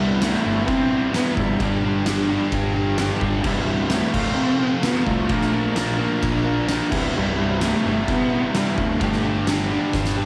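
An expressive bowed cello carries the melody with vibrato, portamento and a soft attack, singing over a bittersweet, cathartic stretch of quiet-loud alternative rock in C major at 130 BPM. Beneath it, three picked electric guitars play riffs: a bright distorted one in the background, a warm overdriven one, and a scooped, double-tracked high-gain one set further back. A fuzzy, overdriven picked bass anchors the low end through chords such as Cmaj7, F/C and Bbmaj7, while an oversized, low-tuned acoustic kit with a fat snare, punchy kick and dark cymbals pumps in a stone room, gritty and saturated, ending on a drum fill at 9.9 seconds, all framed by light reverb and the small-room feel of a home cassette recording.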